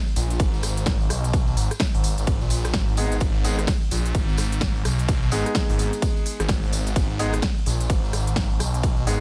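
A swung 128 BPM bass house groove in G# minor, aggressive and swaggering, drives this short cut from a longer piece: an overdriven, punchy electronic kick and a crisp, layered dance kit of hi-hat, ride, rim click and snare sit under a thick, swirling phased detuned saw bass, sidechain-pumped and up front, a jingly tambourine tucked in the background from 0.1 seconds, and bright concert grand piano stabs with dub echo arriving at 3.0 seconds over a single G#m chord.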